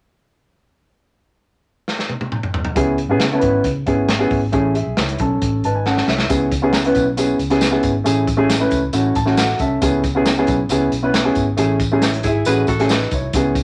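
A crunchy breakbeat drum kit opens this excerpt from an uptempo 1960s-style soul piece at 136 BPM in C# minor, its gritty, saturated hi-hat, tight kick, snare and toms sitting up front before a fill ushers in the band at 2.8 seconds. There a dark, mellow baby grand piano and a round, foam-muted fingered electric bass arrive together over a C#m7 chord, moving through Amaj7 and a lush Amaj9#11/G#, with the piano adding fills of its own. At 6.3 seconds a jingly, band-limited tambourine joins in the background as the harmony cycles through C#m7, Amaj7 and F#m7/A. A clean, hollow-body archtop guitar slips in near the close with a short picked riff. The mood is passionate and driving, with the kit's rolled-off top and a moderate small-room reverb giving the whole a vintage studio feel.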